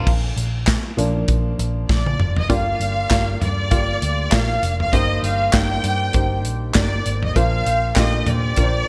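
A woody, slightly detuned upright piano opens this uplifting piano-driven pop excerpt, taking a solo turn over the first seconds while a dark, round, foam-muted picked electric bass and a punchy modern studio drum kit settle in beneath it. The groove moves at 99 BPM in 4/4 with a light 56% swing on the sixteenths, and the whole piece is tuned to A4 = 435 Hz. At 1.9 seconds a clear, focused violin section enters with an up-front, vibrato-rich melody in its high register, just as a drum fill with bright cymbals, handclaps and toms around the medium-tuned snare leads into the second section at 2.5 seconds. The harmony moves from Bb through Gm7 and Eb6/G to Bbadd9, with the worn piano keeping up its accompaniment under the bowed strings. Light reverb and a bright 1980s-style digital production give the mix a polished, sunny sheen, and the mood stays warm throughout.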